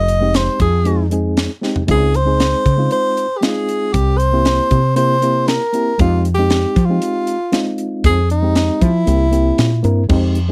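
A dry, close 1970s-style studio sound frames this brooding soul blues excerpt in F minor at 117 BPM, where a breathy, subtone tenor saxophone sings scooped notes over a round, punchy fretless bass, a tight funk kit with a high-tuned snare and a drum fill at 1.6 seconds, and a worn, slightly out-of-tune reed electric piano with fast tremolo moving through Fm7, Dbmaj7 and C7.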